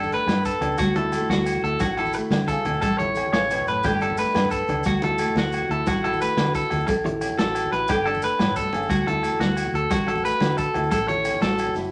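Danceable highlife guitar band groove at 118 BPM in a straight 12/8 in D major, cycling through Gadd9, Dadd9 and A, where a twangy, slightly broken-up electric guitar plays picked arpeggios up front over a dark, fingerpicked nylon-string guitar, foam-muted fingered electric bass and a punchy vintage drum kit with a medium-tuned snare, while bright congas, grainy maracas set back in the background and ringing agogo bells entering at 0.3 seconds fill out the percussion, all of it in moderate studio reverb as a passage cut from a longer piece.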